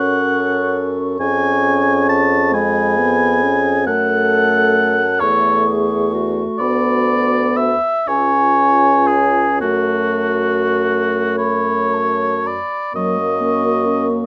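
In a rubato 6/8 pulse of roughly 33-45 BPM counted in dotted quarters, this slow, solemn and elegiac romantic movement for wind quintet in F# minor unfolds as a fragment of a longer piece. A distant, airy wooden flute carries the melody with a straight tone and crisp attack, while a clear, up-front oboe with light vibrato sings the second line. Beneath them, a punchy, present French horn and a background clarinet fill in the harmony over a bassoon bass with a warm tone, all set in a moderate large-studio reverb as the minor harmony gives way to a brief F# major section at 12.9 seconds.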